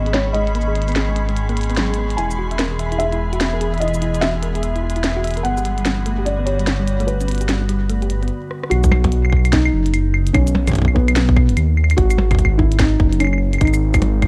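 IDM at 147 BPM in B major, playful and intricate, with a swung sixteenth-note feel and a light digital ambience around it. A felt-muted upright piano carries the melody throughout, soft and boxy, trailed by digital delay, while a dark detuned saw bass rumbles up front beneath it. For the first 8.3 seconds an icy, crystalline glass pad pumps under sidechain compression, a round, tine-like thumb-piano synth pluck spins arpeggios through chorus and delay under a filter sweep, and a grainy, flickering texture sits far in the background. A glitchy drum kit of tiny snare, clicky hats, claves, rim clicks, shaker and percussion blips runs from the start under low-pass filtering, and after a brief stop and a drum fill, a tight electronic kick joins at 8.8 seconds. The chords move from G#sus4 through E and Gmaj7 before settling on B and G#5 in the closing section of this cut from a longer piece.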